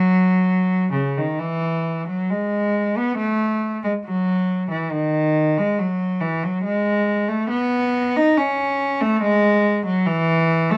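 Flowing and dance-like, this short portion of a baroque-style suite movement for unaccompanied cello moves in 3/4 at about 69 BPM, its uneven beats stretched and pulled with rubato. A single bowed cello in period style, tuned to A4 = 438 Hz, sounds both up front and distant, with a rich, nasal, reedy gut-string tone and light vibrato, ranging from C#3 to D#4, and a new passage begins at 1.4 seconds. Moderate studio reverb fills out the dark, warm production.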